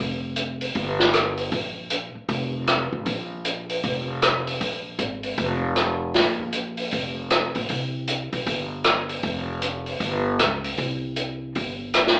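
Open and spiritual in mood, this short cut from a longer modal jazz performance swings in 4/4, with a pizzicato upright bass on gut strings setting a woody, thumpy foundation from the first moment. At 0.4 seconds an acoustic jazz kit joins with hi-hat, rim click, a medium-tuned snare and a boomy kick, sounding roomy and distant yet placed up front alongside the bass. The live gig comes through the venue's PA with moderate club reverb and an AM-radio colour.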